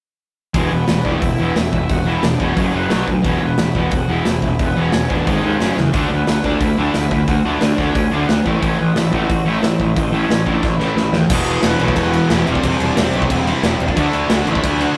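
Rebellious and rowdy, this punk rock passage charges along at 179 BPM in a straight 4/4, cut from a longer piece and captured as a rough rehearsal-room recording with light reverb. A big acoustic drum kit sits up front with a punchy kick, a medium-tuned snare, hi-hat and bright crash cymbals ringing in a big room, and it throws in fills around 5.8 seconds and just before the shift at 11.3 seconds. A growly, fuzz-soaked picked electric bass, overdriven and equally forward, drives the low end, while a distorted, compressed electric guitar churns out a riff behind it alongside a very quiet, sludgy overdriven guitar that also plays a riff in the same register. Higher up, an overdriven electric guitar carries the melody from the background with a bright, picked edge. The harmony moves through power chords on E, F#, B, G# and D before settling on A, then the new section from 11.3 seconds brings a second, double-tracked sludgy guitar into the riff as the chords turn to E, C/E and D.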